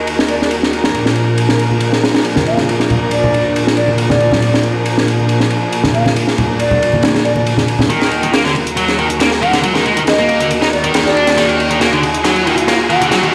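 An energetic, raw breakbeat excerpt opens with an airy, tongued baroque flute melody filtered to a telephone-like tone with delay over rich, bowed symphonic strings with sidechain pumping and a crunchy, gritty drum kit with a high-tuned snare; ringing congas join at 1.5 seconds, and at 7.9 seconds a bright, distorted picked guitar riff and a faint analog hi-hat arrive as a filter sweeps the flute, a very quiet riser enters at 9.4 seconds and a drum fill closes the build-up, all set in a bare stone room with vinyl crackle.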